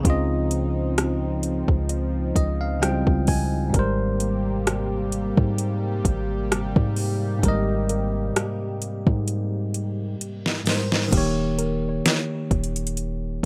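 Contemporary R&B at a slow 65 BPM with a gently swung 16th feel, this sensual, longing excerpt from a longer piece sets a bell-like, bright tine electric piano over a deep, sine-toned 808-style bass and a warm analog pad with chorus, moving through Dbmaj9 and Abmaj9 before landing on Eb7 at 11.1 seconds. An electronic R&B kit with a soft kick, deep snare and metallic hats sits up front with overdrive, playing a fill that overlaps a very quiet reverse cymbal before that chord change, while a dark, very quiet round pluck adds texture from 1.9 seconds, just as the electric piano plays a fill. The mix is dry and rough, like a home demo.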